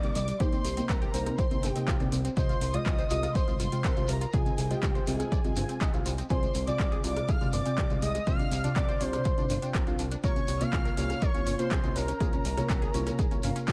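Dreamy and emotional, this progressive house passage, cut from a longer piece, moves in a straight 4/4 over a chord cycle of Cm7, Fm7, Dm7b5 and Db6. A punchy, overdriven electronic kick sits up front from 0.4 seconds, joined by an overdriven deep house kit of handclaps, rim clicks and metallic hats that sounds re-recorded in a large room, while a grainy shekere adds acoustic texture in the background. Underneath, a fat analog bass built from detuned sawtooth, square and triangle waves carries ring modulation, saturation and a filter sweep, pumping against the kick. A deep, dark chord stab with a moving notch and decaying tail is coloured by chorus, phaser, cassette tape grit and delay, and a tight, driving sequenced synth spins arpeggios in the background. On top, an expressive synth lead with vibrato and subtle chorus sings the smooth, evolving melody, shadowed by a lush, bowed studio violin section playing a higher second line, all set in a digital ambience.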